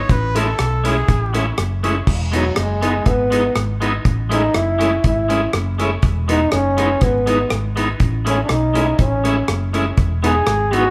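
A cheerful, joyful ska groove in a straight four, heard as a short cut from a longer piece with the feel of a band playing live together in one large room, with vinyl crackle over the top. A deep, acoustic reggae kit with a tight, dry kick sits up front beside a dark, round hollow-body bass played with the fingers, while a clean, picked electric guitar adds bright accompaniment through spring reverb and tape echo. A full, shouting tonewheel organ with key click, light overdrive, chorus vibrato and a slow rotary speaker throws stabs from the background. The trumpet opens with a brief solo carrying light vibrato, stopping at 1.5 seconds, and the trombone takes over at 2.4 seconds with a vintage, up-front solo for the rest of the passage. Underneath, the harmony rocks between Amaj7 and Emaj7 every couple of seconds, keeping the mood sunny and cheerful.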